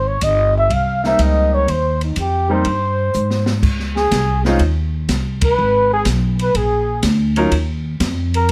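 Small-group swing and bop jazz at 123 BPM with a swinging, sophisticated mood, cut from a longer piece, where a mellow, breathy flugelhorn carries the melody with vibrato and plate reverb over a whispered, very quiet trumpet second line, a woody, thumpy pizzicato upright bass, a small-room drum kit with dark cymbals, a high-tuned snare and a boomy kick, and a clear grand piano accompaniment entering at 1.0 s, as a drum fill leads the move from Ab major into Db major at 3.6 s and the band hits an accent at 5.3 s.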